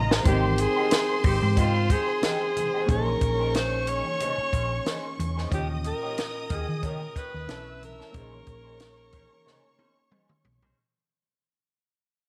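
This short cut from a longer piece of lush 1970s-style soul opens with a drum fill on a compact cocktail kit, as a clear string section, a worn, slightly out-of-tune tine electric piano and a round, dark hollow-body bass sound together from the start. At 91 BPM in 4/4 with a 16th-note swing in Bb dorian, the mood is cinematic and bittersweet, moving through Abmaj7, Bbm11 and Eb7 before a brief Bm11 turn. A breathy alto saxophone enters at 0.3 seconds and carries the melody up front, intimate and whispered with jazz-style vibrato, while the bowed strings play a smooth second line with slapback echo. In the background, an electric guitar through a small old amp plays a twangy, slightly broken-up riff with wah, and distant congas played with soft hands add very quiet color. The dry kit, with its punchy kick and high-tuned snare, sits forward in a small room with light reverb and plays another fill from 9.5 seconds as the passage fades out.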